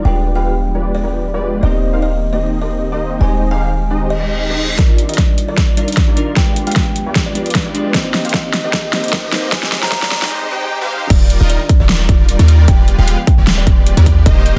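A dense, heavily limited mix with light digital reverb carries this euphoric, playful future bass excerpt in Eb major at 152 BPM, felt in half-time with a gentle 16th-note swing. A fat, detuned sawtooth polysynth riff, an airy, breathy pad with a moving notch, and mellow, glassy keys pump under sidechain beneath a buzzing, woody kalimba melody soaked in dub echo, while a deep, boomy 808-style bass anchors the opening. A reverse cymbal enters at 4.2 seconds, and at 4.8 seconds the bass drops out as an overdriven, punchy kick and a big-room kit with a huge snare and metallic hats drive a filter-swept build-up with a rising riser. At 11.1 seconds the bass returns for the drop as the keys fall away.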